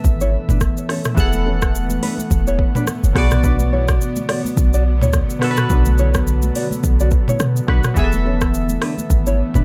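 A deep, boomy 808-style bass sits up front in this joyful, sunny afrobeats excerpt with a light swing. A produced afro-pop kit of deep kick, metallic hats, rim clicks, shaker and toms drives it, while very quiet, close and dry high-tuned congas add a thin-skinned touch, and detuned analog keys with chorus and plate reverb carry the accompaniment. A mellow, blurred granular pad holds sustained chords in the background, and from 0.2 s a full-bodied, thumb-plucked nylon-string guitar plays a riff through tape echo as the harmony moves from Esus4 to Bm and back to Esus4.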